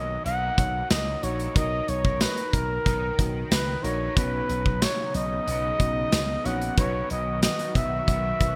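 Uplifting and nostalgic, this 1980s-style pop excerpt puts a breathy, intimate flugelhorn melody with light vibrato up front over a dark FM electric piano, a compressed overdriven guitar with analog chorus in the background, and a punchy, bright slap bass through an envelope filter, while a big rock drum kit with a punchy kick, medium-tuned snare, hi-hat and tambourine treated with gated reverb enters at 0.3 seconds and a thick, detuned sawtooth unison pad with chorus and phaser swells in at 4.2 seconds, all set in a lush hall with bright digital production.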